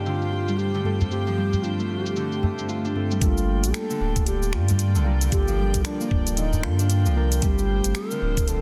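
A dense, heavily limited modern mix with light studio reverb frames this earthy organic downtempo excerpt in G minor at 114 BPM, swung on the 16ths, moving from Fadd9/G to Gm7. A tongued, bamboo-toned bass bansuri with vibrato carries the melody over a ringing, bright Celtic harp arpeggio and soft, dark felt-like synth keys that move through a filter sweep. Distant, floating bowed strings sustain chords, while an electronic afro-pop kit of cabasa, finger snaps and metallic hi-hats sits alongside a small udu heard in the background from 1.0 to 6.6 seconds. A round, up-front sub bass and a gritty, thumpy kick arrive at 3.2 seconds, with pumping on the bass, keys and strings.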